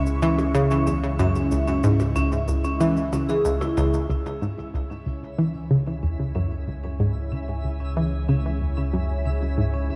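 An echo-heavy mix set in a moderate plate reverb gives this excerpt of cosmic, mysterious space music a deep, floating sense of distance. At 93 BPM in straight 4/4 and resting on C# minor, it is driven by an up-front analog pluck riff, bright and wave-folded with a detuned sawtooth edge, carried on chorus, delay and shimmer reverb. Beneath it a round analog bass holds a dark, nasal low C#, while a swirling phased pad sustains evolving detuned chords with a slow attack and long release. A vibraphone played with medium mallets spins metallic, ringing arpeggios through delay and shimmer with a slow motor vibrato. Electronic shaker and percussion blips, overdriven and echoing as if re-recorded in a small room, tick faintly until 4.1 seconds, when the second section begins and the vibraphone and pad fade in. From 5.0 seconds a sparkling granular texture adds a soft octave-up shimmer to the mix.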